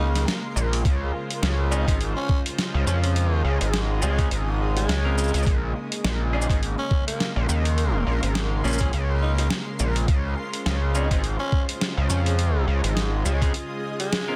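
Over a swung, swaggering glitch hop groove, a thumpy pitched-down electronic kick and a sampler-style boom bap kit of hi-hat, rim click, shaker and snare back a raspy, growling tenor saxophone solo with digital delay, while a saturated sawtooth synth bass sits up front, a pumping string section holds sustained chords and a blurred granular cloud pad adds sustained texture in the background, and a bright, clean semi-hollow guitar adds delayed, pumping stabs from 1.7 seconds in this playful, densely mastered excerpt cut from a longer piece.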